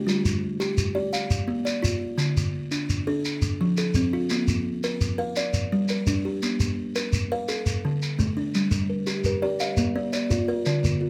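An interlocking 12/8 mbira-style cycle at 113 BPM drives this rippling, warm piece of southern African traditional music in G equiheptatonic, where a buzzing, woody, thumbnail-plucked kalimba with a dark, solid-board tone carries the arpeggios up front throughout, a grainy shekere adds mellow percussion from 0.1 seconds, and a softer, airy, hollow-box kalimba sounds briefly at the start before rejoining at 8.7 seconds, the whole captured with close, detailed microphones and little reverb.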